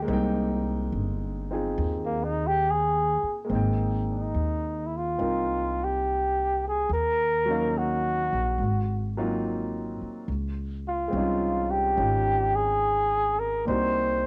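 A clear baby grand piano and a woody, growly upright bass open this romantic, late-night jazz ballad, cut from a longer piece in Ab major at a swung 71 BPM in 4/4. The piano's short-sustain chords sit beneath a plucked bass that stays up front, its steel strings thickened by transformer saturation. At 2.1 seconds a mellow flugelhorn enters in a jazz-style solo role, leading with vibrato and scooped notes, its vintage tone colored by cassette tape and a plate reverb. The harmony moves from Abmaj9 through Ebm7, Ab13 and Dbmaj9 before reaching Cm7b5 at 13.7 seconds. A snug booth ambience and home cassette recording give the whole an intimate, slightly worn character.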